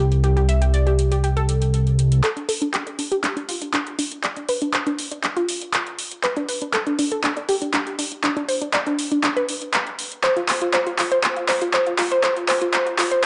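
Expansive and hopeful, this 120 BPM progressive house excerpt opens on a C5 chord, with a fat, nasal, detuned analog bass that holds until 2.2 seconds beneath round, warbling arpeggios from a vintage analog pluck treated with chorus and delay. From 2.2 seconds a filter sweep moves through the pluck during a build-up, while a layered big-room electronic drum kit of metallic hi-hats and overdriven handclaps plays a fill through to 13.3 seconds. The production is dark, set in a moderate room reverb with the top end rolled off.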